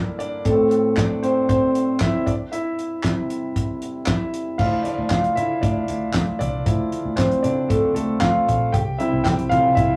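A rough, tube-saturated rehearsal-room sound with a short small-room ambience carries this uplifting piano-driven pop excerpt at 116 BPM in a straight 4/4, where a clear, intimate concert grand with audible action noise and long sustain leads up front over chords such as Amadd11 and Dmadd9, a dry 70s drum kit with a fat snare, tight kick, dark cymbals, handclaps and toms joins at 0.2 seconds, and a round, foam-muted electric bass enters at 4.6 seconds.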